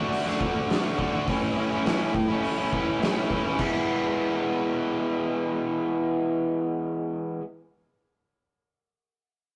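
A cranked, double-tracked stack guitar opens this raw, swaggering garage rock fragment at 104 BPM in E mixolydian, its bright overdriven picked riff sitting up front over D, A and then E chords, while an oversized low-tuned acoustic kit with a fat snare, punchy kick, crash and hi-hat plays in gritty and dark from 0.1 until 3.7 seconds, leaving the guitar to carry on alone to 7.4 seconds in a rough rehearsal-room sound with stone room reverb and warm saturation.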